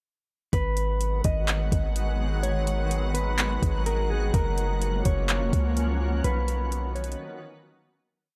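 A sparse half-time beat from a tape-warm electronic kit, with a soft kick, handclaps, metallic hats and fast hi-hat rolls, drives this melancholic, spacious cloud-rap piece, joined by deep sine 808 sub-bass notes that follow the kick with pitch slides, a dark, clean, fingered electric guitar repeating a sampled-sounding loop through a low-pass filter and digital delay, and a shimmering, ethereal, detuned pad with chorus, granular texture, built-in reverb and sidechain pumping that enters at 1.0 seconds, before the drums and bass stop at 7.2 seconds inside a fade-out that begins at 6.2 seconds.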